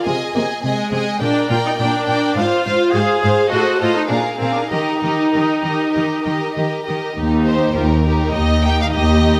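This short cut from a longer piece opens with violins and violas, cellos joining a split second later, in a quick, graceful and lively classical-period movement for string orchestra in Eb major, moving at roughly 96-105 BPM in 4/4 with a rubato feel. The first violins carry the melody with a focused, vibrato-laden bowed tone, while the second violins add a lush, expressive second line beneath them. Violas supply smooth, even accompaniment and cellos hold the bass line, both sitting up front in the mix. The harmony passes through chords such as Ab/C, Fm/Ab and an Adim7 before settling on Eb at 4.7 seconds, and the opening phrase returns at 7.2 seconds, when the double basses enter on a low Eb to deepen the bottom. Close, detailed microphones capture the ensemble in a moderate recital-hall reverb.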